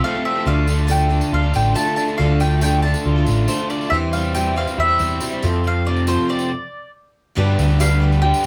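A live band plays together in a small room with moderate ambience in this wistful, dusty folk rock and heartland rock passage, cut from a longer piece, at 139 BPM in D minor. A round, double-strung mandolin carries the melody over a punchy, up-front electric bass, a crunchy double-tracked overdriven guitar riff, bright picked acoustic guitar and a mellow dark baby grand set back in the mix, with jingly compressed tambourine throughout. A very quiet, shouting tonewheel organ with slow rotary swirl holds chords until a full stop at 6.5 seconds, and the band returns at 7.4 seconds.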